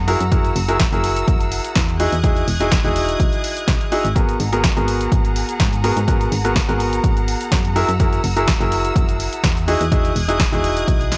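A clear, intimate baby grand piano carries the riff in this soulful, bittersweet piano house excerpt at 125 BPM in G# minor, its action noise audible, with delay and sidechain pumping. A round, mellow FM bass and a rich, bowed studio violin section holding sustained chords with vibrato also pump under the sidechain as the harmony moves through F#9, Emaj9 and G#m9. A layered house kit of hi-hat, shaker and snare is soon joined by a punchy electronic kick re-recorded in a large room, together driving the beat in a dry mix.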